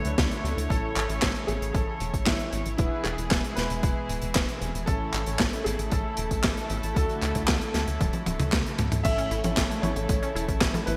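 A straight, driving groove powers this sunny, danceable italo disco passage, cut from a longer piece. An overdriven electronic kick punches under a tight, acoustic funk kit of handclaps, hi-hat, a medium-tuned snare, toms and crash cymbal, all soaked in gated reverb. Underneath, a dark, driving sequencer bass with sawtooth and square-wave tones, ring modulation and a fast filter pluck is warmed by tube saturation. A vintage grand piano with a smooth, warm tone carries the melody through analog chorus and delay, above a bowed studio string section that holds soft, floating sul tasto chords. Mellow, brassy synth stabs with detuned sawtooth tone and chorus sit in the background before dropping out at 9.6 seconds. After a drum fill at 8.0 seconds, a round, detuned analog pluck enters at 9.1 seconds with chorused and delayed arpeggios, all framed by a lush hall reverb and a bright 1980s-style digital sheen.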